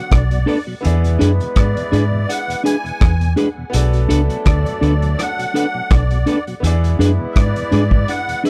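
A reedy musette accordion carries the melody in this bittersweet lovers rock reggae excerpt, its wet, shimmering tuning touched with tape echo, while a mellow horn section, doubled in octaves, plays a smooth jazz-style second line beneath it. From the first moment, a bright grand piano sits in the background with brilliant, short-sustained accompaniment, and a very quiet tonewheel organ adds piping, scooped tones through chorus vibrato and a rotary speaker. At 0.1 seconds a vintage drum kit arrives up front, with a punchy kick, hi-hat and rim click in a small, pumping room and a rolled-off top. A dark, round, foam-muted electric bass enters at the same moment, fingered and amped, and sits up front alongside the drums. A clean semi-hollow electric guitar joins at 0.5 seconds with fingered stabs that also carry tape echo. The harmony moves between Bm7 and E7 over a lightly swung sixteenth-note feel, the mix is dry, and the longing mood holds throughout.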